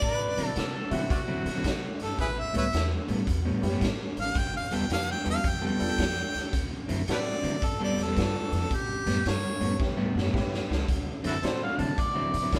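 Soulful and laid-back, this electric blues shuffle at 110 BPM in D mixolydian swings easily, with a smooth-topped harmonica carrying the jazz-style melody with light vibrato, tongue slaps and scooped notes until 9.8 seconds, when a drum fill follows. A gritty, amplified second harmonica adds a short line at the start and returns at 11.3 seconds to solo, over woody pizzicato upright bass, a punchy, saturated garage drum kit up front, a dark, slightly broken-up electric guitar riff with spring reverb, and a clear vintage upright piano in the background. The band plays live together in a stone room with moderate reverb, in a passage cut from a longer piece.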